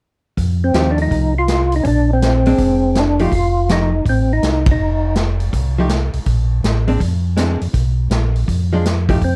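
A dark, lightly reverberant production frames this swinging, bluesy soul jazz organ trio excerpt in F mixolydian at 163 BPM, with a mellow, round tonewheel organ holding down the bass line through a slow rotary speaker, key click audible, while an acoustic kit with dusky cymbals, a punchy kick and a medium-tuned snare swings the eighths on hi-hat, ride and snare. A fat, percussive second organ with third-harmonic percussion, chorus vibrato and slow rotary carries the melody up front from 0.6 to 5.2 seconds, and the whole band hits an accent at 4.6 seconds. A clean, compressed, hollow-body archtop guitar comps with a picked attack throughout, over changes moving through F9, Bb9, F7 and Bb9 before closing on a B(b5) sonority.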